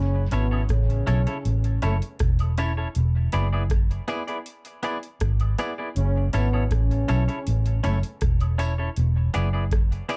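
A mellow trombone section and a round, foam-muted electric bass open this short cut from a longer roots reggae piece, setting a serious, laid-back mood at 80 BPM in F# minor. The trombones play a soft-attacked, close-miked second line with light vibrato and a tight, classical-style blend, trailed by dub echo, before they fall away at 8.0 seconds. The dark, amped bass sits up front in a low register, while from 0.3 seconds a bright, twangy clean electric guitar adds picked, compressed accompaniment that also carries dub echo. A booming analog drum machine drives the groove with a deep kick, metallic hats and rim clicks, sounding dry and tape-warm, and tambourine and woodblock sit in the background with a small-room acoustic feel. The harmony moves between F#m7 and E7 under light reverb and a dark overall production.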